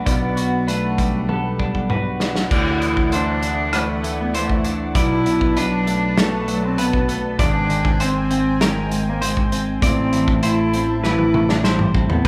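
This hopeful, cinematic post-rock excerpt at 98 BPM in a straight 4/4 opens on a full band sound: a warm, bowed cello carries the melody sul tasto with a pure, floating tone and a touch of slapback echo, over a lush, thick sawtooth unison pad that holds nasal, detuned chords with a slow attack, long release and chorus. Beneath them, a compressed twelve-string electric guitar picks clean arpeggios in the background, while a bright semi-hollow electric guitar adds higher picked arpeggios through harmonic tremolo and slapback echo. A growly picked electric bass anchors the low end, and a loose indie drum kit joins at 0.1 s, punchy and up front with dark cymbals, a medium-tuned snare, rim clicks and toms. Over an opening Gmaj7/B chord, a drum fill at 1.3 s leads into the main passage, which moves from Dadd9 through Bm7 and Abmaj7 to Am, and another fill arrives at 11.0 s. The band plays live together in a large studio, with a moderate reverb giving the ensemble a spacious, cinematic sheen.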